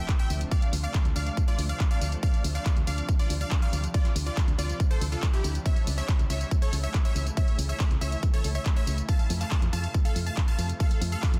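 A straight pulse from a layered, tape-warm electronic kick up front and an analog drum machine's handclaps, hi-hat and tambourine drives this bittersweet, emotional uplifting trance fragment, opening on a very quiet sub drop impact alongside a detuned supersaw stab melody with dub echo and a faint, bright, phased unison pluck second line, as a round, dark FM bass soon pumps beneath them over Dm7, A/C# and F, all set in digital ambience with a dense, heavily limited modern master.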